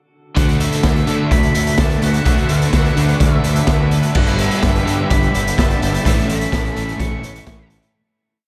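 A straight 4/4 pop groove at 127 BPM drives this short, complete shoegaze and dream pop piece in D major, carried by a raw garage drum kit up front with a punchy kick, a medium-tuned snare, hi-hat and crash cymbal in a pumping small room, its top rolled off and its sound gritty. Beneath it, a growly fuzz fingered bass plays a driving eighth-note line in the background, while a thick fuzz guitar strums chords with whammy-bar dips and a double-tracked overdriven electric guitar rings out compressed chords. A very quiet overdriven semi-hollow guitar adds volume swells with a hollow-body tone, and a sweeping resonant pad enters at 0.7 seconds with bright, detuned sawtooth chords, a slow attack and a filter swell. Over the top, a dark octave-fuzz lead guitar with distortion and delay plays a motif-based melody of hook phrases. The harmony moves from Dadd9 to G6 at 4.2 seconds and arrives on A at 6.1 seconds as the whole mix fades out, drenched in a huge ambient reverb that leaves the mood blissful and hazy.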